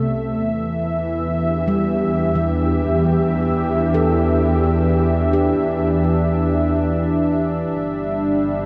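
Bathed in a vast, echoing cathedral reverb, this luminous, peaceful ambient passage in free time, cut from a longer piece, centers on an up-front vintage analog pad whose detuned sawtooth chords swell in slowly and warble through chorus, moving from Em7 to G5, while a very quiet handpan rings out meditative fingertip arpeggios until 7.5 seconds and a warm chamber double bass section sustains a biting, even bowed line with vibrato underneath.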